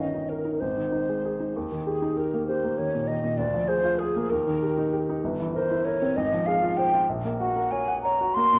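Solemn and melancholic, this romantic classical fragment for flute and grand piano moves in a rubato 6/8 at 65 BPM in dotted quarters, settling into F minor from 5.2 s. An airy, hollow concert flute with vibrato and a soft attack carries the melody up front, while a clear, polished baby grand with short sustain supplies the accompaniment, also up front. A moderate recital hall reverb surrounds both, and the whole passage sits on worn old cassette tape with a warbly pitch drift, cut from a longer piece.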